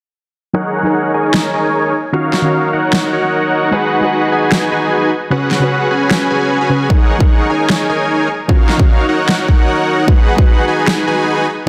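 A huge, thick, detuned supersaw riff with sidechain pumping and a filter sweep leads this lush, bright half-time future bass excerpt, over a soft, round chorused pluck in the background, a huge overdriven snare, and a punchy overdriven kick that enters at 6.9 s, all set in a lush hall reverb.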